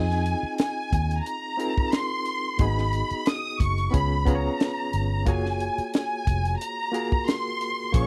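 A dry, close studio sound with little reverb frames this short cut from a longer piece of lush 1970s-style soul, moving at 90 BPM in 4/4 with a gentle swing on the sixteenths. Up front, a symphonic violin section carries the melody high in its range, its bowed ensemble tone expressive and smooth-topped, with vibrato and soft attacks. Beneath it, a reedy electric piano plays accompaniment through its built-in speakers, bright and barky, lightly overdriven and shimmering with fast tremolo. A vintage fingered electric bass, foam-muted, dark and round yet punchy, anchors the low end. A tight funk drum kit joins at 0.1 seconds with a high-tuned snare, tight kick and hi-hat. The harmony drifts from Fm7 through Abm7 and Db7 to a plush Gbmaj9, lending the passage a warm, lush glow.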